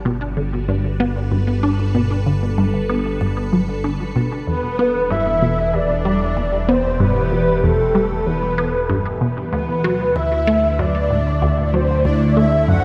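Ambient, sequencer-driven space music with an expansive, hypnotic mood, where an evolving wavetable pad fades in with sustained, morphing chords over a fat analog bass, a squelchy, resonant blip pluck riff with chorus, phaser and tape echo enters at 0.1 seconds, and a breathy, flute-like synth lead carries the melody up front from 4.5 seconds, all bathed in a wet spring reverb and an echo-heavy mix as the harmony moves from G to E minor to D.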